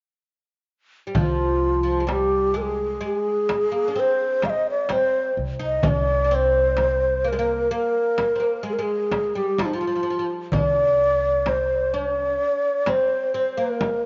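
Arabic maqam ensemble music in C maqam bayati, moving at 128 BPM in a straight 10/8 with a hypnotic, soulful mood, cut from a longer piece. The breathy, mellow low ney carries the melody from 1.2 seconds, sitting close-miked and up front with a soft attack, vibrato and a slapback echo trailing its reedy cane tone. Beneath it, a plectrum-plucked fretless oud plays a second line with a woody, double-strung depth, while a pizzicato upright bass holds a growly, thumpy low C until it drops out at 12.4 seconds. The percussion pairs a crisp, small metal-shelled darbuka with a deep, large frame drum, both played with soft hands in a small room. A moderate plate reverb lends the ensemble a lingering tail, and the top end stays soft and rounded.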